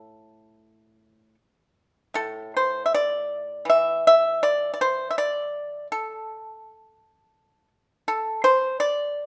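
Chinese traditional music for solo plucked strings, this brief passage cut from a longer piece carries an elegant, longing mood. A single pipa plays alone throughout its 9.3 seconds, sitting up front in the sound. Plucked with fingerpicks, the instrument has a dry, percussive bite while keeping a warm acoustic body. The free, rubato feel lets phrases breathe across a range from low A2 up to E5 within the yu mode. A short opening idea gives way at 2.2 seconds to a longer second passage, all set in light reverb.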